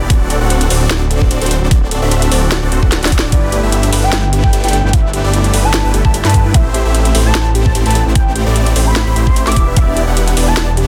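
A short cut from a longer future bass piece in G major opens with a soft, round pluck arpeggio, huge detuned supersaw chords, a thick saturated saw bass and a knocking, up-front kick with a trap kit of sharp snare and metallic hats, all at 149 BPM in a swung half-time feel; after a drum fill, a velvety, mellow lead with portamento and tape echo enters in the background at 3.3 seconds, carrying the lush, euphoric mood over pumping D7, G69, Am7 and Em7 chords in a dense, heavily limited modern mix.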